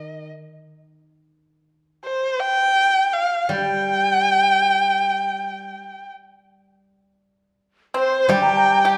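A warm, bowed erhu sings the wistful, graceful melody up front, its expressive line shaped by vibrato and portamento, while a silvery steel-string zither rings softly beneath it in this Chinese traditional chamber excerpt. Near the close a bright, percussive pipa enters at 7.9 seconds, and an airy large bamboo dizi with a buzzing membrane joins at 8.0 seconds from the background. The whole is set in a recital hall reverb with a dark production.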